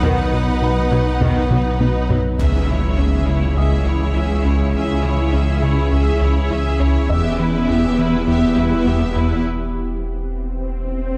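A vast, tense cinematic excerpt blending orchestra and electronics opens at 102 BPM in C# minor, with hard-stick taiko drums, a shimmering, ethereal ambient pad with chorus, a tine-like FM synth pluck tracing arpeggios, a round analog bass riff, a deep sine sub bass, a soft felt-muted upright piano, and lush bowed string sections: a rich background violin line, focused violas and distant cellos. At 2.4 seconds an electronic impact hits as a clear, intense violin melody enters over the shift from B to C# minor, later moving to E minor. The whole piece sits in a wet scoring-stage reverb, and at 9.5 seconds it breaks down to the sub bass and piano beneath an electronic swell.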